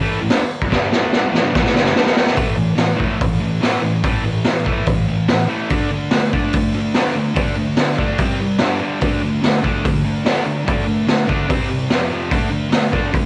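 Raw and menacing, this short garage rock excerpt cut from a longer piece is driven by a thick, bright fuzz guitar, double-tracked and picked, playing a distorted riff over power chords moving from A5 through D5, C5, G5 and F5. A raw acoustic drum kit joins at 0.3 seconds with a punchy kick, high-tuned snare and hi-hat, sounding saturated and gritty with a rolled-off top, and it plays a fill from 0.7 to 2.4 seconds before the riff settles into its longer second part. Both parts sit up front, the drums in a small room, with light reverb and the grain of a home cassette recording.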